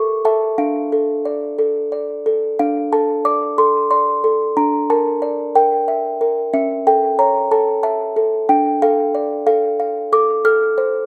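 A solo music box carries this short classical lullaby from start to finish, its delicate, tinkling tone sitting up front with a mellow, dark edge that suits the small-box character. Set in D minor and a gently rocking 6/8 at 61 BPM counted in dotted quarters, the piece feels dreamy and innocent, with a straight, unhurried pulse. The music box spans from C#4 up to F6, and a slapback echo trails its plucked notes, while light reverb adds a faint halo in an open-air setting free of room sound. A brief opening passage gives way at 2.6 seconds to a longer second section, where the harmony moves through Em7b5/D, A/C#, Dm and F/A. Cut from a longer piece, this 11-second fragment stays soft and smooth throughout, like a bedtime tune drifting from a child's keepsake.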